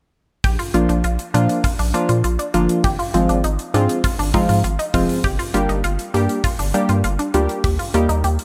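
Synth-pop with an upbeat, bright mood, this short cut from a longer piece moves through Bb, Fm/Ab, Gm and Eb over a straight 4/4 groove from a gated 80s drum kit, its punchy kick and hi-hat sitting in an airy stone room. A round, deep analog bass and up-front warm analog keys with chorus and a sawtooth filter sweep carry the harmony, the keys entering at 0.7 seconds. On top, a resonant, squelchy blip pluck spins detuned arpeggios through phaser and analog delay, all under a light studio reverb.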